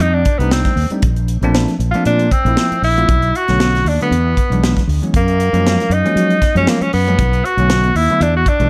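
A forceful, bright tenor saxophone with vibrato carries the soaring melody through a plate reverb in this slick electric jazz fusion fragment at 117 BPM, its sixteenths lightly swung in 4/4. Underneath, a dark, round fretless electric bass with analog chorus and a crisp, airy drum kit with a punchy kick sit up front. A bell-like tine electric piano bathed in lush chorus joins at 0.4 s over changes moving from F13 and A#maj9 through Bm7, E9 and F#maj7.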